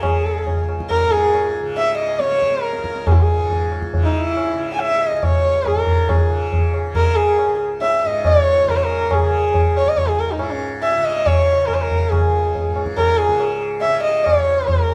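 Longing and meditative, this Hindustani classical excerpt in raga shivaranjani on C# moves at 139 BPM in a straight 7/4, with a close, up-front sarangi carrying the melody in gliding, portamento-laced lines with light vibrato and an airy bow, over a bright, buzzing tanpura drone and a low-tuned, short-ringing tabla, all three playing together for the full 14.9 seconds in a wet studio reverb.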